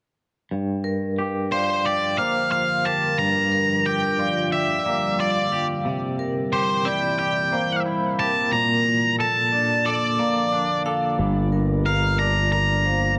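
A twangy, clean electric guitar with tremolo and tape echo opens this cinematic, cathartic rock excerpt at 90 BPM in G dorian with arpeggios at 0.5 seconds, soon joined by ringing, metallic vibraphone arpeggios, a picked octave-fuzz lead guitar carrying the up-front distorted melody, and a deep, moody detuned-sawtooth pad with chorus holding slow-attack chords over Gm7, C7 and Bbmaj7, before a growling overdriven fingered bass enters on G at 11.2 seconds, all set in a moderate plate reverb.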